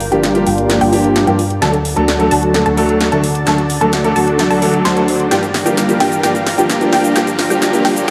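Huge, detuned supersaw chords carry the riff in this powerful, emotional festival progressive house excerpt, their sawtooth stack roughened by vintage 12-bit sampler grit, a low-pass filter and tape echo as a filter sweep runs through them. The whole passage is a build-up over Gm7, D and back to Gm7, with the big-room dance drum kit playing a fill throughout: a punchy snare, metallic hi-hats and a shaker, all high-pass filtered. A fat, thick analog sawtooth bass anchors the low end, while a lush unison pluck plays arpeggios in the background, its wave-folded, noise-layered tone also swept by a filter and echoed on tape. A warm baby grand piano supplies accompaniment with tape echo, and a bright, warbling vintage pad holds sustained chords under chorus. A very quiet electronic riser enters at 3.8 seconds, and a wet, lush digital hall reverb lends the mix its ambience.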